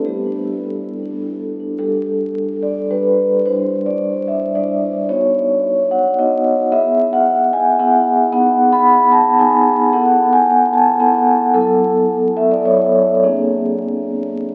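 A solo vibraphone played with soft mallets opens this short passage cut from a longer contemporary classical piece, its mellow, ringing tone placed up front with a medium motor vibrato and an airy shimmer. The mood is flowing and warm, moving in a rubato 3/4 at around 102-114 BPM in G major, with the instrument ranging from F#3 up to B5. Color-rich harmonies drift from G6/9 through Gadd9, Cadd9 over G and Badd9 toward B6 and F#m7, before closing on an unexpected Bb9 at 13.2 seconds. A brief opening phrase gives way at 1.8 seconds to a longer second section that carries the vibraphone through to 14.5 seconds. The sound sits in a deep cathedral reverb with a long decay, heard through the crackle and patina of a very old 78 rpm record, lending the metallic resonance a time-worn haze.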